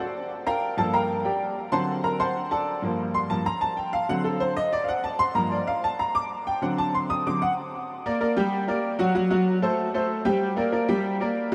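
A clear grand piano carries this short Latin excerpt alone, playing from 0.0 to 11.5 seconds at a brisk 190 BPM in straight 4/4 and G minor. Its tone is boxy with short sustain and sits up front, colored by analog chorus and analog delay, and it ranges from G2 up to Eb6. The opening passage, which runs until 7.9 seconds, rocks back and forth between Gm7 and D7, giving the music a passionate, danceable pull. After that point the harmony shifts to Gm, F#dim and back to Gm. A huge ambient reverb with a 6.9-second decay soaks the whole mix, lending it a dreamy, wet haze around the crisp piano.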